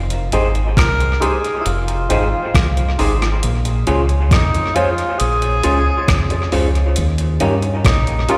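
Smooth and tender, this short lovers rock reggae passage, cut from a longer piece, moves through Fm7, Bbm7 and Eb7. A deep, round dub bass sits up front with a dark, punchy fingered tone, beside a gated 80s drum machine whose thumpy kick, hi-hat and rim click sound sampler-like, overdriven and re-recorded in a small room, with tape echo. A barky tine electric piano, lightly overdriven through a combo amp with phaser, tape echo and slapback, fills in the accompaniment alongside stabs from an electric guitar through a small old amp, slightly broken-up, compressed and lo-fi, bathed in spring reverb and echoes. At 0.8 seconds a warm tenor saxophone enters with the melody, distant and roomy, with light vibrato and a pop-style solo voice carried on tape and slapback echo. The whole performance comes across like a live gig heard through the venue's PA, with the bloom of a recital hall around it.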